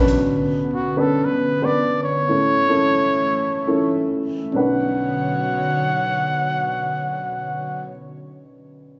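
A straight 4/4 pop pulse between 100 and 118 BPM slows from 0.2 to 4.5 seconds in this earnest, dramatic B minor fragment, which moves from Bmadd9 to A and back. A dark, woody upright piano sits up front as accompaniment, and an airy, detuned pad with chorus holds sustained chords beneath it. A breathy, whispered trumpet with light vibrato carries the solo melody from 0.7 seconds, while the band sounds live in one large, reverberant room with a muffled top end.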